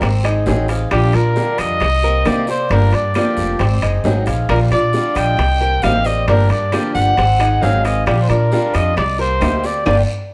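Cuban son in the guajira vein, this danceable, warm clip at 134 BPM cycles through Ab7, Bb6, Cm7 and Gm7 under a punchy, vintage-toned trumpet melody with vibrato and plate reverb, riding up front beside a thumpy, woody pizzicato upright bass. A dark, boxy fingerpicked acoustic guitar plays swing-style accompaniment while a metallic, double-strung Cuban tres picks arpeggios in the background. Round, low-tuned bongos and ringing metal-shell timbales join the tres there, along with a raspy guiro and very quiet, distant claves that enter at 0.2 s. The dusky studio sound carries moderate reverb, and the band hits an accent at 9.9 s just before this cut from a longer piece ends.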